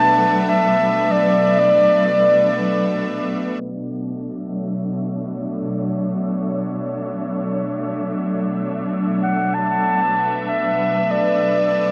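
A mellow, classical-style solo clarinet with dub echo opens this spacious, deep ambient excerpt in free time and B minor, tuned to A4 = 445 Hz, falls silent at 3.3 seconds and returns at 9.2 seconds. Meanwhile, a rich, smoothly bowed studio string ensemble with light vibrato sustains chords throughout, beginning on Bm11. Everything is set in an echo-heavy mix with echo chamber reverb, vinyl crackle, a low-pass filter, faint mains hum and a filter sweep from 3.6 seconds.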